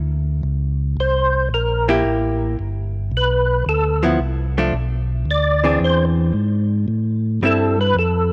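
A fat, percussive tonewheel organ with key click, third harmonic percussion, chorus vibrato and a slow rotary speaker carries the melody from 1.0 s in this greasy, bluesy swing jazz excerpt, over a mellow, round organ bass line through the same vibrato and slow rotary, while a dark, compressed, hollow-body archtop guitar, picked and clean, accompanies from 1.9 s to 7.8 s in light reverb.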